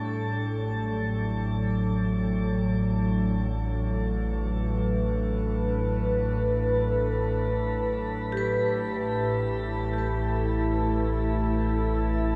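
This ambient fragment drifts in free time with a warm, peaceful mood, taken from a longer piece and bathed in a long shimmer reverb with a cassette-tape character. A warbling, nostalgic pad sits up front, holding detuned, mellow chords with a slow attack, long release and chorus, its lo-fi tone colored by ring modulation. Beneath it, a nasal analog drone evolves with its own chorus, while a round sine sub bass holds a deep A1 from 0.1 seconds onward. The harmony rests on a rootless Gmaj7 over A before shifting to a rootless F#m7 over A at 8.6 seconds. A metallic vibraphone struck with hard mallets rings briefly at the very start, then returns at 8.3 seconds with arpeggios carrying a medium motor vibrato, a boxy small-room tone and delay, adding a warm glow to the close.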